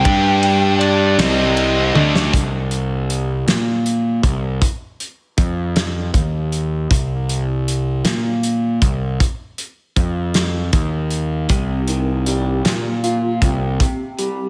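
Quiet-loud alternative rock in 6/8 at 52 BPM in C dorian, brooding and angsty, this piece opens with an overdriven lead guitar melody and tape echo over two picked riff guitars, one crunchy with spring reverb and one bright and distorted, before all three drop away around a drum fill at 1.9 seconds, leaving a round, punchy fuzz bass and a loose indie kit with a fat snare and dark cymbals, until a lo-fi, slightly broken-up guitar enters at 11.5 seconds with arpeggios coloured by harmonic tremolo, all set in a big arena sound with scoring-stage reverb.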